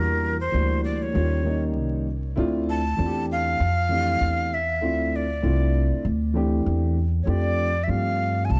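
A breathy, bright jazz flute with vibrato and a crisp, chiffy attack carries the melody over a dark, intimate concert grand with audible action noise and a woody pizzicato upright bass in this smoky, mellow jazz-hop fragment, cut from a longer piece, where a swung groove, light reverb and vinyl crackle shape a dark, warm feel as the harmony moves from Em7b5 through Eb9 and Dm9 to F69 at 7.3 seconds.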